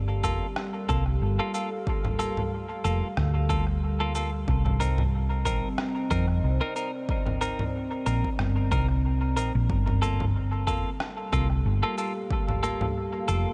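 Deep and hazy, this ambient dub fragment moves on a swung 16th-note feel, with a round, up-front hollow-body bass under a detuned, slow-attack pad carrying sampler grit and chorus over Gm9 and Cm7 chords, clean picked semi-hollow guitar stabs trailing dub echo, muffled, tape-toned cabasa, rim click and congas, and a punchy overdriven electronic kick that stops at 12.4 seconds, all set in a light digital ambience.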